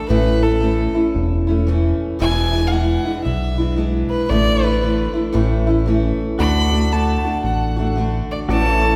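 Sunny and nostalgic, this swinging honky-tonk and classic country passage opens on a clear, nasal fiddle solo with light vibrato, set over boxy picked steel-string acoustic guitar and a fat, saturated analog bass up front. At 6.4 s a twangy, clean pedal steel guitar slides in with sustained chords as the harmony moves to D. The playing sits in a wet concert-hall reverb with a churchlike sense of space.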